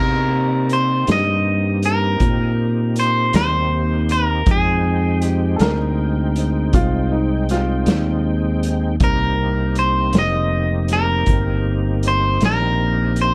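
A dark production with light reverb frames this brooding, mournful slow blues in 12/8, cut from a longer piece and moving from Cm7 to Fm7 and back. An up-front, twangy electric guitar at the edge of break-up carries the melody over sustained chords from a reedy tonewheel organ with key click, chorus vibrato and a slow rotary speaker, while a punchy, direct fingered electric bass anchors the low end. A vintage drum kit with a boomy kick, medium-tuned snare, hi-hat and a pumping small-room sound joins at 0.7 seconds, and a clear, woody upright piano adds a brief second line from 5.6 to 8.2 seconds.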